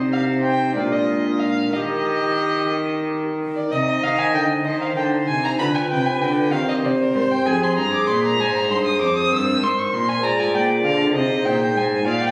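Radiant and dance-like, this baroque-style sonata movement with continuo moves at 64 BPM in 6/8, counted in dotted quarters and shaped with supple rubato, beginning in E-flat major before turning to C minor at 3.7 seconds. An alto recorder carries the melody with a woody, airy straight tone, its crisp, chiffy attack and lifted highs giving the line an expressive glow. A dark violin enters at 0.1 seconds with a second line, its nasal, reedy gut-string sound played in period style by one bowed player and sitting up front despite a distant quality. Beneath them, a single bowed cello supplies a rich, reedy gut-string bass, while a pipe organ on stopped flute registers fills in soft, hollow, mellow accompaniment with romantic voicing. The harmony moves through chords such as G7b9, F minor and A-flat, and the whole ensemble rings in a wet recital hall reverb of 1.6 seconds, captured on a phone in the room with added studio reverb. 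Cut from a longer piece, this excerpt lasts about 12.3 seconds.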